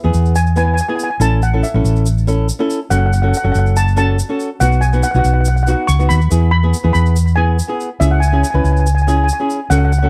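A round, amped hollow-body electric bass sits up front in this sunny, festive calypso excerpt at 141 BPM in E major, moving under chords of E, A, F#m, B, E and C#m. Above it, a close-miked lead steel pan with a metallic shimmer carries the melody through plate reverb and tape echo, while a small, fingerpicked nylon-string guitar adds warm accompaniment with its own plate reverb. A grainy, bright tube shaker sits low in the mix from 0.1 seconds, and the production as a whole has a dark tone with light reverb.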